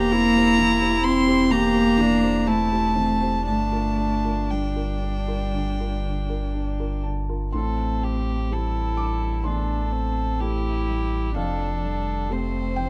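Intimate and tender, this rubato neoclassical excerpt in 4/4 places a single violin, pure, floating and sul tasto, up front over a dark, woody viola with vibrato and a close cello whose airy bow and light vibrato carry a second line, while a felt-muted upright piano sits mellow in the background with audible action noise and a deep sine-and-triangle sub bass with octave holds full and sustained beneath, all captured as a rough home demo with light reverb and small room ambience.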